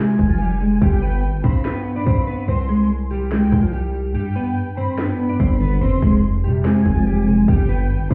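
Muffled as if heard through a wall with a stony room tail, this dark, eerie half-time trap excerpt sets a clean, picked electric guitar melody up front over a lush bowed violin section with delay and vibrato, a heavy, saturated 808-style bass with a fast attack, and a trap kit from 0.2 seconds of hard-clipped kick, sharp snare, crisp hats and finger snaps, while a mellow tine electric piano heard through built-in speakers joins at the break at 4.1 seconds.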